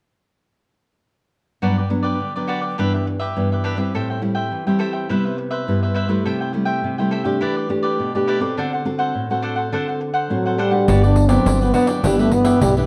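A straight 4/4 samba-and-choro tune begins at 1.6 seconds with crisp, picked cavaquinho and a full-bodied, fingerpicked classical nylon-string guitar with audible finger squeak, moving through Gmaj7, Am7, Cmaj7 and D7 in a festive, sunny mood; a breathy, whispered jazz trombone then enters up front at 10.3 seconds with scooped notes and light vibrato, joined at 10.9 seconds by woody pizzicato upright bass and jingly, dry pandeiro played with soft hands, inside a dark studio sound with moderate reverb, cut from a longer piece.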